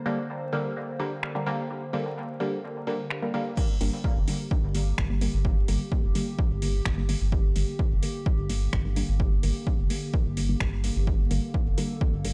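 Deep and hypnotic, this excerpt of dub techno moves in a steady, straight 4/4 over a single G minor chord. A warbling, nostalgic pad of detuned waves holds sustained chords with slow attack and long release, colored by chorus, phaser, built-in reverb and sidechain pumping, while a muted, detuned sawtooth chord stab sits a little louder beneath it, carrying dub echo with chorus and phaser. A soft vintage rhythm box supplies crash cymbal, finger snaps and metallic hats, all low-pass filtered and tape-warm, from the opening moments. At 3.6 seconds a punchy analog kick arrives up front as a filter sweep begins to evolve across the stab, and at 3.8 seconds a round, soft sub bass joins, pumping under the kick. The whole recording is dry and gritty, with a layer of vinyl crackle running through it.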